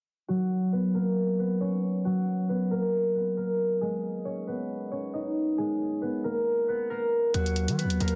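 A half-time trap feel at 136 BPM sets up a melancholic, menacing hip hop excerpt, where a ringing, thumb-plucked concert harp carries the melody from 0.3 s over a filter sweep and chords moving from Gbadd11 to Abmadd9, before a punchy, sine-heavy 808-style bass and metallic electronic hi-hats arrive at 7.3 s on Ebm, all set in a moderate studio reverb and a dense, heavily limited, low-pass-filtered master.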